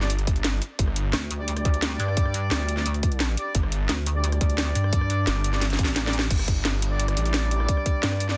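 A straight 4/4 groove at 174 BPM drives this dark, mechanical drum and bass passage, with a tight, up-front electronic kick and a kit of cracking snare, metallic hi-hats, rim clicks and crash cymbal, plus a drum fill at 5.6 seconds. A thick, detuned saw bass with chorus, overdrive and sidechain pumping opens the passage over a G5 chord, then a pulsing, heavy pluck wobble bass with chorus takes over at 1.1 seconds, and the saw bass returns at 3.5 seconds. Above them, a mellow, distant brass ensemble plays classical-style stabs with light vibrato and delay, all set in a digital ambience under a dense, heavily limited modern master.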